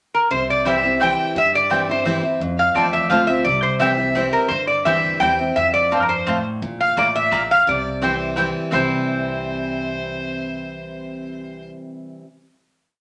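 Driving and rustic, this short bluegrass piece in C mixolydian moves at 171 BPM in 3/4. An up-front, nasal lap resonator guitar opens within a brief pickup bar, playing a motif-based slide melody with fingerpicks, and it is soon doubled in unison by a distant, earthy bowed fiddle with light vibrato. Beneath them, a bright, full-bodied dreadnought guitar alternates bass and strum with bass runs, an upright bass thumps dark root-and-fifth lines with walk-ups on gut strings, and a woody mandolin chops the off-beats, all set in a wet club reverb before the piece settles on a final chord at 8.7 seconds.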